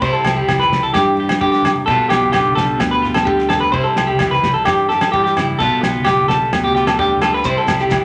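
A straight four-beat soul drum kit groove, with a fat snare, a tight kick and a rolled-off top, drives this warm, sunny highlife guitar band excerpt, joined by ringing, dry agogo bells from 0.2 seconds and distant, low-tuned congas from 0.4 seconds. A dark, up-front clean electric guitar picks the accompaniment while a second, bright clean guitar plays arpeggios over a direct fingered electric bass, the harmony swaying between C and G7/B. A grainy, mellow shekere slips in at the back at 7.4 seconds, and the band sits in a moderate studio reverb.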